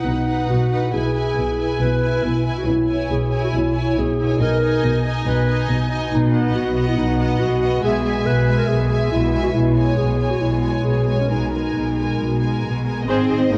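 Violins, a mellow solo clarinet, lush violas and a very quiet concert harp open this heroic, triumphant film-score excerpt together at 139 BPM in 4/4. A rich, focused violin section carries the soaring melody while a smoother second violin line, the clarinet and the violas fill the middle, and the harp rings out fingerpicked arpeggios. From 0.1 seconds, expressive cellos and woody double basses add a bowed bass, and the harmony moves through E, C#m and G#madd9 over B in the bass. The whole passage sits in a wet recital-hall reverb and carries the warbly pitch drift of worn cassette tape, with the clarinet dropping out at 12.6 seconds as the strings and harp continue to 13.6.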